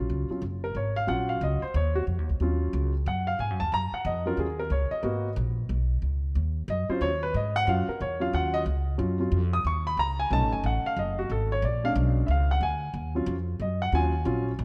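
A warm baby grand piano leads this short jazz passage, taking a solo from the opening through 14.6 seconds while also supplying the accompaniment in a range from Gb3 up to Eb6. Set in big band swing at a brisk 182 BPM in 4/4 with a 63% swing on the eighth notes, the music feels swinging and brassy in mood, centered in Eb minor. An upright bass, plucked and woody with steel strings, sits up front alongside the piano, holding the low end between Gb1 and Ab2 for the full length. The harmony moves from Ebm7 to Abm7 and back, then passes through a rootless B7 and a Bb7#9 before settling on Ebm7 again near 12.9 seconds. Both instruments sound close, with the piano natural in tone, framed by a light reverb in this passage cut from a longer piece.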